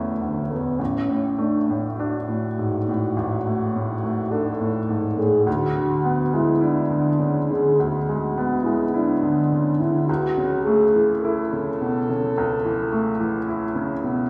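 Romantic classical music for French horn and grand piano, lyrical and warm with a flexible rubato feel, in which a mellow solo horn carries the melody until 13.4 seconds while a clear, intimate baby grand sits up front in accompaniment, its natural tone carrying audible action noise and continuing alone to 14.3 seconds, set in the wet reverb of a recital hall with small room ambience and cut from a longer piece.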